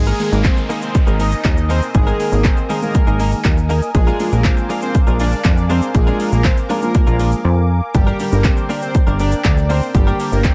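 Confident and driving, this dance-pop excerpt moves at 120 BPM in a straight 4/4, cut from a longer piece and presented dry and close. A punchy pop drum kit of kick, metallic hi-hats, handclaps and shaker sits up front with an overdriven, layered edge, while a plucky analog bass with a fast, decaying filter snap gives the low end a funky bounce. A soft supersaw carries the melody with a detuned unison body and a sub octave, colored by digital delay, and a dark, intimate concert grand piano murmurs in the background with audible action noise. A bright, clean electric guitar recorded direct plays a picked riff through analog chorus, and a nasal, detuned analog pad enters at 0.5 seconds with slow-blooming sustained chords. The bass, piano, supersaw and pad all pulse with sidechain pumping, a background downlifter sweeps through the opening until 3.9 seconds, and the harmony moves from Absus2 to Bb7 to Gm, with a brief silent gap at 7.4 seconds before the final chord.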